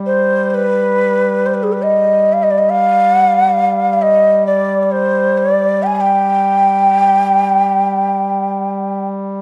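Unhurried and rubato, this brief, longing Caucasian folk lament sets a mellow duduk holding a low G3 drone with scooped notes and a smooth top beneath a breathy bamboo bansuri, which sits up front and carries the mournful melody from Ab4 to Ab5 with vibrato and a crisp attack, all in a dark production with a moderate recital hall reverb.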